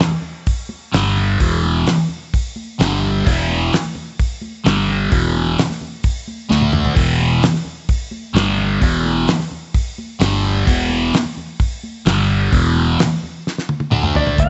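A thick, double-tracked fuzz guitar with phaser drives a repeating power-chord riff over G, E and D in this trippy, kaleidoscopic psychedelic rock excerpt at 129 BPM, backed by a dry, damped 70s drum kit with a fat snare and fills at 6.5 and 13.5 seconds, a growling overdriven fingered bass, very quiet high-tuned congas, and a dark, clean lap steel that slides in only at 14.2 seconds, all in a small, lightly reverberant room.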